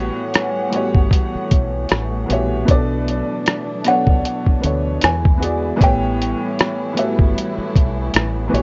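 A muffled, sampler-style drum kit sits up front in this short excerpt of nostalgic, melancholic lo-fi hip hop, its thumpy kick, hi-hat and rim click carrying a gritty 12-bit edge and a lazy 16th-note swing at 77 BPM in 4/4. Alongside it, a boxy, slightly detuned upright piano, also up front, with a cassette-tape character and long sustain plays the accompaniment through A13, Bm9 and E7 before settling back on A13. A round, foam-muted dub bass adds a punchy low end, while a dark studio string section holds lush, bowed chords with vibrato. At 2.3 seconds a mellow, hollow-sounding kalimba enters with a soft, plucked melody trailed by tape echo, falling away at 7.7 seconds. Light reverb and the warble of old, worn tape give the whole mix a drifting pitch and a dusky top end.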